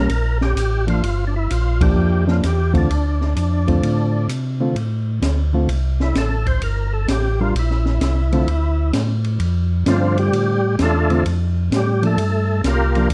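A swung 4/4 groove at 129 BPM drives this soulful, bluesy soul jazz organ trio excerpt in D minor, where a thick, lightly overdriven percussive tonewheel organ carries the melody through slow rotary speaker, chorus vibrato and plate reverb, taking a solo from 4.8 seconds, over clean fingered hollow-body guitar accompaniment, a round, mellow tonewheel organ bass with key click and its own slow rotary, and an open acoustic drum kit with dark cymbals, a high-tuned snare and a boomy kick, all in a dark production with a band accent at 1.7 seconds.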